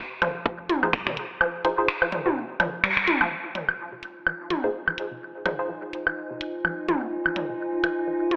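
Minimal techno at 126 BPM in F minor, cool and sparse, cut from a longer piece, where a squelchy, resonant blip pluck riff with phaser, sidechain pumping and dub echo rides over a very quiet saturated sub bass, up-front tape-warm garage drums with finger snaps and hi-hat, tape-echoed electronic toms and claves, a tight electronic kick heard only from 0.5 to 1.0 s, and crisp wavetable chord stabs from 0.8 to 5.7 s. At 3.3 s the chords move from F5 to Fm7 and a filter sweep begins, and a swarming, tense drone and a warbling, nostalgic lo-fi pad then arrive near 4.4 s, all set in a lush hall reverb with a telephone-like sound.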